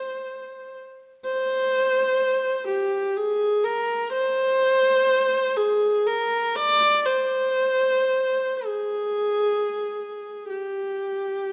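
A single bowed viola, close and up front with a warm, smooth, even tone and vibrato, sings a lonely, yearning classical line in a free, rubato 6/8 across this 11.5-second fragment of a longer piece, its voice carried into the wet reverb of a recital hall.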